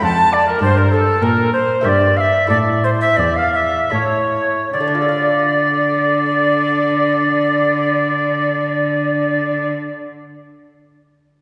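An airy tenor recorder with a chiffy, crisp attack carries the melody from the opening moment over a lightly vibrato oboe second line, a clear, smooth bowed cello bass and a delicate fingerpicked lute on gut double strings, all unfolding in a grave, introspective baroque-style sonata fragment in triple time that slows through its first 4.7 seconds, cadences onto D minor and lets the lute sound alone briefly at the close, bathed in the long, wet reverb of a church or concert hall.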